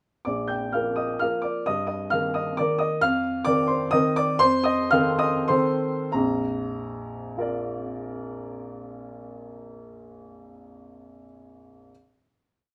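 A solo upright piano opens this short, complete classical waltz in Bb major, its woody, open tone sitting up front in a moderately large studio space. Playful and elegant in 3/4 with a rubato feel, it carries the tune in octaves over a waltz bass, ranging from deep Bb1 up to G6. The tempo slows from 2.4 seconds as the phrase moves through F7sus4 and F7 before settling on a closing Bb chord at 6.1 seconds.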